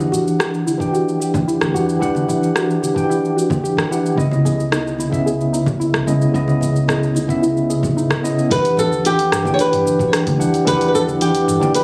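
Sunset chillout at 111 BPM in 4/4 with a smooth, warm mood, cut from a longer piece and moving between Em9 and C#m9. A clean tine electric piano with tape echo sits up front over a woody, thumpy pizzicato upright bass, a produced R&B kit of cabasa, hi-hat, rim click and toms, bright soft-handed congas, and an electronic kick drum that joins at 0.8 seconds. A dark, round pluck with chorus and tape echo plays arpeggios in the background until 8.4 seconds; at 8.5 seconds a fingerpicked flamenco guitar with digital delay takes the melody up front, finger squeak audible, all captured on a phone in a studio room with moderate plate reverb.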